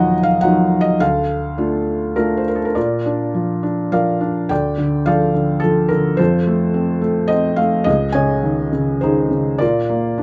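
Close, detailed microphones and a nearly dry room place a felt-muted upright piano up front, its soft, mellow, intimate tone carrying the audible noise of the action. This short fragment of a longer lyrical classical solo piece moves at 105 BPM in a rubato 3/4 in Bb major, tuned to A4 = 438 Hz, with a sunny, warm mood spanning Db2 to Ab5. It opens on Ebmadd9 and Dm, shifts into a new section at 2.8 seconds through Bb, Dm, F and Dbsus2, and settles back on Bb at 9.6 seconds.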